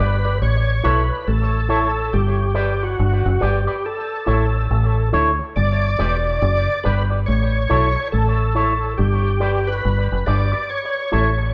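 A round, punchy fingered dub bass sits up front and dark beneath this laid-back, hypnotic roots reggae piece at 70 BPM, swinging on the sixteenths as the harmony alternates between A and G. A gritty, overdriven tonewheel organ carries the melody through chorus vibrato and a slow rotary speaker, while a bright, twangy electric guitar with an envelope filter supplies clean picked accompaniment, colored by spring reverb and tape echo. The band plays live together in one room, wrapped in wet studio reverb, and all three parts enter at the start of this 11.5-second slice from a longer piece, with the organ and bass lasting to the end and the guitar stopping just short of it.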